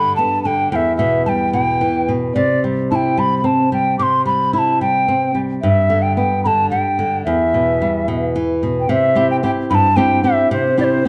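Andean folk in a wistful, melancholic 6/8 at 73 BPM, this brief passage cut from a longer piece sets an airy, hollow cane quena, played with vibrato, a soft attack and lifted highs, up front over a fingerpicked acoustic flamenco guitar moving through G, Em and C, both wrapped in a moderate recital hall reverb and a dark, warm production.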